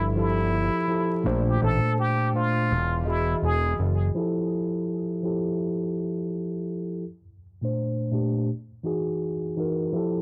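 Hazy and lo-fi, this dreamy, nostalgic fragment of a longer piece sounds like a cassette home recording, with vinyl crackle, a dulled top end and a modest small-room reverb. It is a lo-fi hip hop groove in F major at 83 BPM in 4/4, with a lazy swing on the sixteenths, cycling through Fmaj9, Bbmaj9 and Emaj9. Up front, a trumpet with a plunger mute carries a jazz-style solo melody, breathy and wah-wah tinged, with scooped notes and a light vibrato, softened by a low-pass filter and a tape echo before it drops out at 3.8 seconds. A fat, thick analog bass with a detuned sawtooth tone, fast plucky attack and sustained notes sits low with transformer saturation, stopping at 4.1 seconds. The mellow, clean tine electric piano, heard as if through built-in speakers with a cassette-tape colour, plays the chords throughout, and from 4.1 seconds it carries on alone under a filter sweep to the close.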